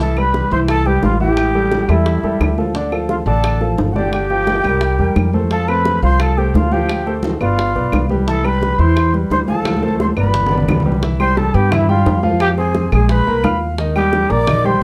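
Afro-Cuban jazz with a sophisticated, danceable feel, cut from a longer piece and set in a straight four. A growling trumpet carries the melody with a raspy, gritty jazz tone that sits distant and roomy, while a metal jazz flute plays a second line above it, breathy and bright with vibrato and a crisp, chiffy attack. A clear concert grand piano provides accompaniment with natural, deep bass, and a pizzicato upright bass with steel strings stands up front with a woody sound. The percussion blends ringing, medium-tuned congas in the background, tight, high-tuned bongos played with soft hands that sit close and dry, and claves that join at 0.2 seconds in a small room. A drum fill at 9.7 seconds leads into a new passage at 11.0 seconds, where the harmony turns from Cmaj7 toward Fm and Ebmaj7. The whole production is dark and warm, with moderate studio reverb.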